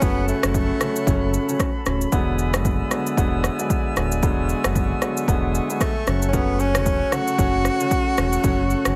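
Afrobeats at 114 BPM in F# minor with a smooth, mellow swing: a breathy tenor saxophone with scooped, jazz-style notes plays the melody from 0.0 to 1.8 seconds and returns at 5.8 seconds, over a dark, worn grand piano with audible action noise, airy flute-section chords, a deep sine sub bass and a punchy electronic deep house kit of kick, rim click and shaker, all heavily compressed like a radio broadcast in this short cut from a longer piece.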